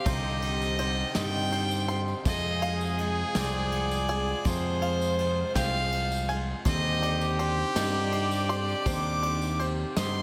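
A clear, nasal fiddle carries the wistful, stirring melody up front with light vibrato and a slapback echo, while a mellow trumpet adds a second line in this 6/8 indie folk passage cut from a longer piece. A round fingered electric bass sits up front beneath a shimmering, octave-doubled twelve-string acoustic guitar with slapback, a twangy banjo playing arpeggios through slapback and analog delay, a very quiet grand piano with audible action noise, and soft-attack brass holding sustained chords. Brushes on a soft drum kit and a jingly tambourine stay in the background, and a lush hall reverb lends the mix a big arena sound.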